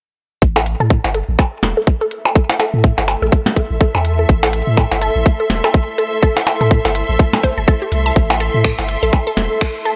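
An up-front mix with light reverb carries this clinical, quirky cut of minimal techno in A minor at 124 BPM, swung on the 16ths and resting on a single A minor chord. A tight, layered electronic kick and a deep, punchy sine sub bass with a pitch-drop attack anchor the groove, joined by tape-tinged percussion blips and a minimal click kit of finger snaps and clicky hi-hats. Above them a squelchy, resonant blip pluck runs through phaser and tape echo, a blurred granular cloud pad enters at 1.7 seconds, and a very quiet pulsing gated texture with chorus appears at 9.0 seconds, while the bass, pluck and pad all pump against the kick.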